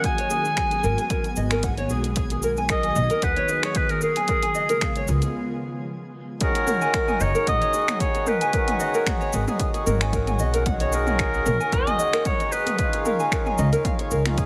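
Lightly reverberant, with a small-room ambience, this mystical, hypnotic organic downtempo piece moves at 113 BPM in 4/4 with a gentle sixteenth-note swing, centered on G# dorian and tuned slightly below standard pitch. A bright, vintage-toned clarinet carries a soft-attacked classical-style solo melody through tape echo. Alongside it a dark, boxy nylon-string guitar is fingerpicked in arpeggios through a low-pass filter and its own tape echo. A very quiet, twinkling granular shimmer and an ethereal, airy detuned pad with ensemble chorus and sidechain pumping open the piece, and a woody pizzicato upright bass with tube saturation enters at 0.8 seconds. After a brief break, a reedy, breathing pedal harmonium takes over the accompaniment at 6.4 seconds, pumping and echoing over chords that move from F#6 through G#m7 and Bmaj7 to C#. An overdriven deep house kit of finger snaps, hi-hat, shaker and toms rides over a punchy, layered electronic kick throughout, and when the clarinet drops out at 13.1 seconds, the groove carries on to close this portion of a longer piece.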